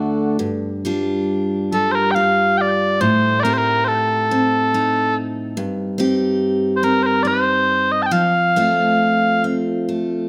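A bright, full-bodied picked steel-string acoustic guitar opens this mournful Celtic slow air at 0.0 seconds, moving freely in rubato 3/4 around 69 BPM through G5, Am7b5, Cm/G and F, with a finger squeak caught by the close, detailed microphones. At 1.7 seconds mellow, sweet small bagpipes enter up front with a continuous, longing solo melody touched by slapback echo, holding until 9.4 seconds. Light reverb surrounds this short section cut from a longer piece.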